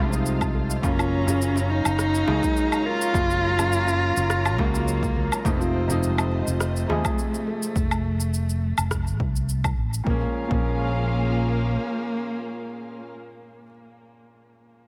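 Heard in a big arena-like space with a lush hall reverb, this hypnotic, mystical organic downtempo piece in Bb minor moves at 104 BPM with a light sixteenth-note swing, cut from a longer work. An up-front, woody cello with vibrato carries the melody through tape and slapback echo, over a round fretless electric bass with lush chorus, veiled con sordino strings and a soft felt-muted upright piano, the strings and piano both pumping with sidechain. A ringing nitrided-steel handpan plays arpeggios in the background, a punchy electronic kick and layered shaker, woodblock and rim click drive the groove, and a crisp, very quiet darbuka drops out at 7.4 s, before the harmony settles on Bbm7 at 10.1 s and the piano plays on alone until 14.9 s.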